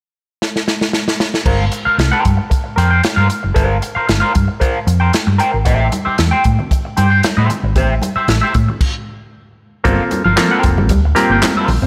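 A drum fill on a big-band kit with dark cymbals and a punchy kick opens this driving, cool funk cut in G dorian at 114 BPM, before a twangy, slightly broken-up guitar with wah and spring reverb joins a round, hollow-body bass at 1.5 seconds over Gm7 and Am7, soft-handed congas sit in the background from 5.7 seconds, and after a stop the groove returns on Gm11 with nasal clav stabs and a compressed, tremolo-washed guitar riff.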